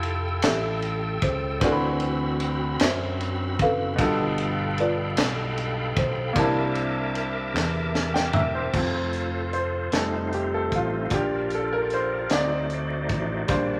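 Uplifting and jubilant, this slow gospel passage in 6/8 moves at 50 BPM in F major, a short section cut from a longer piece. A clear, woody upright piano carries the accompaniment up front with audible action noise. A reedy tonewheel organ holds sustained chords through a fast rotary speaker with chorus vibrato and key click. A growly, punchy fingered electric bass and a tight funk drum kit with a high-tuned snare ground the groove. A buzzing marimba played with soft mallets sings a mellow, round melody until about 7.5 seconds, over very quiet, crisp group handclaps that continue to about 7.9 seconds, while a drum fill from 7.5 seconds leads into a piano solo at 8.7 seconds. The whole recording sits in a large studio reverb with a layer of vinyl crackle.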